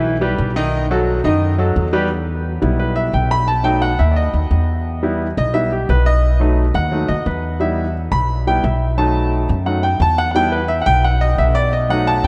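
A clear, intimate concert grand piano with audible action noise and long sustain moves from accompaniment into a solo at 2.1 seconds in this driving, passionate salsa excerpt, backed throughout by a woody, growly pizzicato upright bass, both up front over alternating E minor and B7 chords and bathed in the long echo of a vast cathedral-like space.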